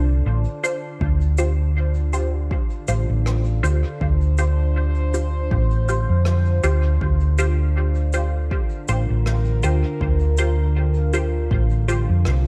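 Ambient dub with a deep, hazy mood, cut from a longer piece and set in an echo-heavy mix with light reverb as the harmony moves from Dm7 to Csus4. A warbling, nostalgic tape-like pad holds dark sustained chords under muted, detuned dub chord stabs treated with phaser, analog chorus, cassette tape and dub echo, while a round, amped hollow-body electric bass sits up front. A brushed shaker and rim click enter at 0.6 seconds trailing dub echo, and an overdriven electronic kick drum joins at 1.0 seconds.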